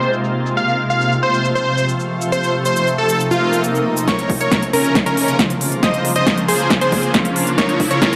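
Emotional and driving, this uplifting trance cut at 137 BPM in Bb minor moves from Abadd9 to F and then Bbm, with a thick, detuned supersaw lead and a shimmering, ethereal pad pumping up front over a big-room drum kit of crisp hats, shaker and punchy overdriven snare, while a background swell and riser rise from 3.4 s into a build-up and drum fill where a round analog pluck with tape echo and a punchy electronic kick join at 4.1 s, all set in a huge ambient reverb.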